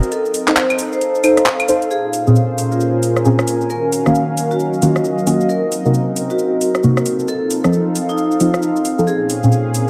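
A soulful, late-night two-step UK garage fragment in Bb minor at 134 BPM opens with ringing, hard-mallet vibraphone carrying the melody through tape echo, a swung electronic garage kit of metallic hats, claves, handclaps, rim clicks and shaker, and a warbling, lo-fi tape-like pad with a nostalgic chorus shimmer. A dark, up-front chord stab with a fast attack, short decay, chorus, phaser and tape echo arrives at 0.5 seconds. A smooth, detuned analog pad joins at 1.9 seconds to sustain chords over a Bbm7, Ebm9, Cm7b5 and F7 progression, all set in a lush hall reverb.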